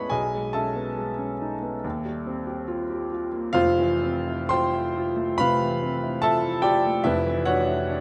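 The recording opens on a dark, warm production, with the grand piano sitting up front inside a wet scoring-stage reverb whose tail lingers for about 1.8 seconds. This short excerpt of classical, impressionist solo piano is dreamy and hazy, moving in 4/4 at a loose 61-75 BPM with a rubato feel that lets time bend. The piano alone carries the music, its clear, intimate tone spanning F1 to D#6, with long sustain and the audible noise of its action giving a natural, close presence. The harmony drifts through lush, colored chords, starting on B13, passing to D#69 at 1.8 seconds and Fmaj7 at 3.6 seconds, before settling on E7sus2/F at 7.1 seconds. The passage is cut from a longer piece, and it ends at 8.0 seconds still suspended in that misty harmonic haze.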